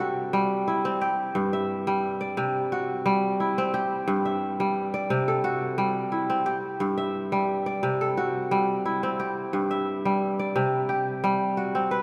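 A solo kora, bright, crisp and up front, rings out in a flowing, warm West African traditional piece at 88 BPM in C Lydian, its fingerpicked lines spanning G2 to E5 while a long cathedral reverb blooms around it over a steady sway between C and G5 chords, shifting to a new section at 10.6 seconds in this 12-second excerpt cut from a longer piece.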